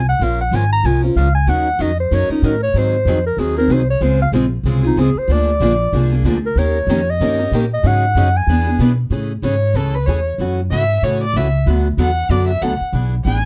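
This lively, swinging slice of acoustic string swing in the manouche style opens with a punchy, forceful clarinet soloing over a woody, growly upright bass and a boxy, picked parlour guitar, all set up front at a brisk 188 BPM in 4/4 with a swung eighth-note feel. The clarinet carries the melody with light vibrato and a smooth top across the first section, moving through a chain of minor and dominant chords such as Bbm9, Ebm7 and Ab7. A second parlour guitar, brighter and marked by finger squeak, joins the accompaniment at 4.0 s and drops out around 8.9 s. At 9.1 s the music settles into A major, where a bowed violin takes over the solo with soft attack, vibrato and expressive portamento over Amaj7, F#m7, D6 and E7. The thumpy pizzicato bass and the first guitar hold the groove to the end of the cut, with light reverb and a dark, warm production.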